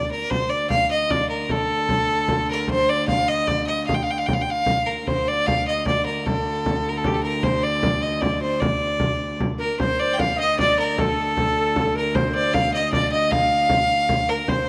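In a straight 3/4 at 152 BPM that gradually speeds up, this mysterious, ancient-sounding medieval dance in D phrygian is carried by an intense, bright fiddle melody played up front with light vibrato, over a deep frame drum struck with soft hands in a small room. A rich, nasal viola da gamba holds a ringing gut-string drone on D2 with an airy, reedy bow. A breathy tenor recorder with a chiffy attack sounds briefly at the start and returns at 9.6 seconds as an expressive second line in the background, all within a moderate plate reverb, as the passage repeats its opening section from 9.8 seconds.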